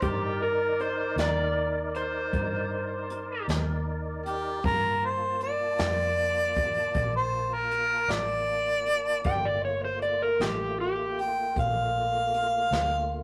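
Brooding and mournful, this slow 12/8 blues in G minor at 52 BPM sets an overdriven harmonica with light vibrato and scooped notes up front against a dark slide guitar second line that drops out at 11.2 seconds, while a fat tonewheel organ with key click, slow rotary speaker and chorus vibrato holds sustained Cm9 and Gm9 chords over a round, foam-muted electric bass and a smooth brushed drum kit with a boomy kick, all in a rough rehearsal-room sound with tube saturation and moderate reverb.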